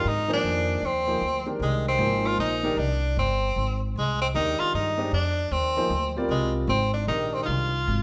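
A live band plays together in a wet stone room whose reverb lingers around this searching, spiritual modal jazz waltz, a swung fragment cut from a longer piece. Up front, an edgy, forceful tenor saxophone solos with vibrato and a punchy jazz bite over a single Fm9 chord, beside a woody, pizzicato upright bass on steel strings. A polished, intimate concert grand piano, warm with deep bass, long sustain and audible action noise, accompanies them until 7.7 seconds.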